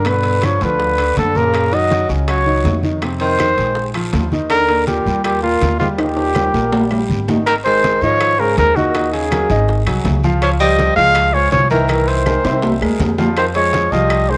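A mellow, breathy trumpet leads up front with light vibrato and scooped notes in this sunny, sophisticated Afro-Cuban jazz excerpt at 162 BPM, with a breathy tenor saxophone playing a lower second line beneath it. A woody upright piano with long sustain comps over a dark, growly pizzicato upright bass, while ringing timbales, low-tuned congas, tight high-tuned bongos, woody claves and a raspy guiro fill out the percussion. The key moves from Eb major to Ab major at 7.5 s, drum fills arrive at 6.0 and 12.3 seconds, and a moderate echo-chamber reverb surrounds a mix with a rounded, softened top end.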